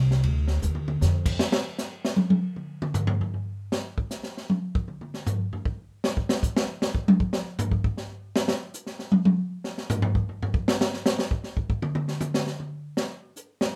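Spiritual and searching in mood, this short modal jazz passage, cut from a longer piece, moves at 156 BPM in a swung 3/4. An up-front upright bass, plucked and woody on steel strings, opens the piece in its low register before stopping at 1.4 seconds. The drums enter at 0.1 seconds, with a fill at 0.6 seconds, and from 1.4 seconds take over for a solo that runs to the end. The kit sounds acoustic and close, as if in a small room, with dark cymbals across crash, ride and hi-hat, a high-tuned snare, a boomy kick and toms. Light reverb gives the drum solo a little air around its open, spacious feel.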